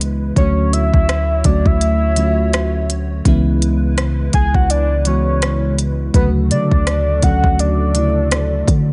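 An up-front, overdriven electronic drum kit, with a soft kick, smooth hi-hats and rim clicks, drives this sensual, late-night contemporary R&B excerpt at 83 BPM, its 16ths swung in 4/4. Underneath, a deep, boomy 808-style bass and a round, dark FM electric piano with chorus move between Dmaj7 and C#m7, while a hollow, flute-like pad sits in the background with ensemble chorus. From 0.4 s a full, octave-layered synth lead carries the melody with detuned, wave-folded tone, vibrato and chorus, all in a dry, close mix.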